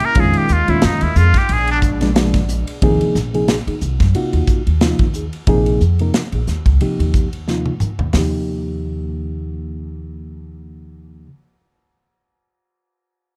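Dark, dry production frames this nocturnal, intense electric jazz fusion piece with a light sixteenth-note swing, where a nasal, vibrato-laden straight-muted trumpet with slapback echo sings a brief, up-front jazz line over a smooth, chorused sawtooth pad that sits in the background until 2.8 seconds, alongside a woody pizzicato upright bass and a punchy, airy studio drum kit from the very start, with a reedy, worn, slightly out-of-tune electric piano entering a moment later; the drums' fill at 7.5 seconds hands off to bass and piano, which carry on alone to the cut at 11.3 seconds.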